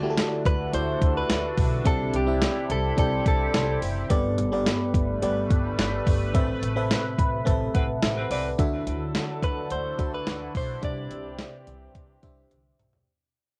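A straight 4/4 groove from a clean, thumpy 12-bit drum machine with tape-warm tambourine and toms drives this uplifting, nostalgic 1980s-style pop passage, cut from a longer piece, over a woody pizzicato upright bass and a glassy, bell-like FM electric piano with chorus. A bright, detuned sawtooth pad holds sustained add9 chords beneath a clean, compressed electric guitar melody recorded direct, which returns at 9.4 s. Distant, mellow horn stabs with tape echo enter at 7.7 s as a band accent and piano fill give way to a fade-out from 8.6 s, closing on a drum fill in the moderate booth ambience of a home cassette recording.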